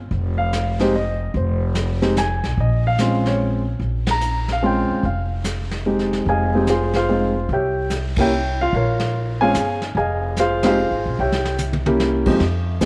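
A smoky, moody sound fills a small room with moderate spring reverb in this short cut from a longer jazz piano trio performance in F minor, moving at 146 BPM in a swinging 3/4. The upright bass starts things at 0.0 seconds, plucked and woody with thumpy gut strings sitting up front, and the brushed drum kit joins at 0.1 seconds with dark cymbals, a tight kick and a pumping room sound under a rolled-off top. The grand piano carries the melody from 0.4 seconds, its tone warm and up front and the loudest voice of the three. The harmony circles between Fm7 and Bbm7, darkened by C(b9) and C7b9 chords, while the band hits accents together at 4.0, 8.1 and 10.6 seconds. A brushed drum fill from 11.2 to 12.0 seconds arrives near the end before the passage cuts off.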